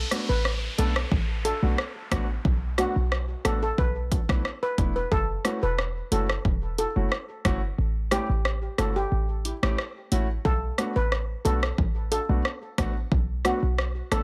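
A dry, close-sounding cut from a longer hypnotic, tough dancehall track in B minor at 90 BPM, where a tight, sine-toned short 808-style bass with a noise layer and an up-front electronic deep house kit with a punchy kick, dark hats and rim clicks drive beneath a metallic, shimmering steel pan melody fed through digital delay and an intimate grand piano with audible action noise, while an electronic downlifter runs until 5.1 seconds and the kick drops out from 7.8 to 10.4 seconds.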